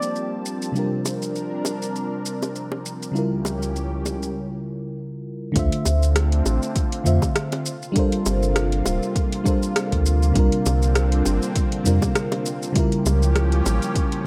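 A deep house drum kit with metallic, overdriven hats, rim click and shaker sets a swung 100 BPM groove in 4/4, joined at 1.1 seconds by round, low-tuned bongos played with soft hands, while an overdriven electronic kick and a round sine sub bass enter together at 5.6 seconds after a short break. This wistful, smooth sunset chillout in D minor opens with a brief scooped note from a mellow flugelhorn carrying vintage sampler grit and delay, over a soft, dark FM electric piano with chorus and delay and a lush, detuned unison pad treated with chorus and phaser. Jazzy extended chords such as Gm11 and C9sus4 drift through light digital reverb, and this cut from a longer piece closes on a rootless A7b9b13.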